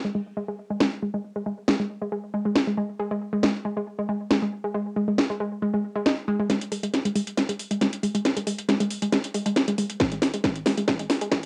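Heard through the high-passed character of a home cassette recording with a moderate studio reverb, this fragment of dark, driving peak-time techno runs at 137 BPM in 4/4 and opens on an up-front analog pluck riff, round and detuned with chorus, sidechain pumping and analog delay, moving through a filter sweep. The electronic drum kit arrives at 0.8 s with cracking snare and metallic hi-hats re-recorded in a small room, and from 6.5 s a drum fill and build-up take hold while the filter sweep continues. A punchy, layered electronic kick drum finally enters at 10.0 s, sitting lower in the mix.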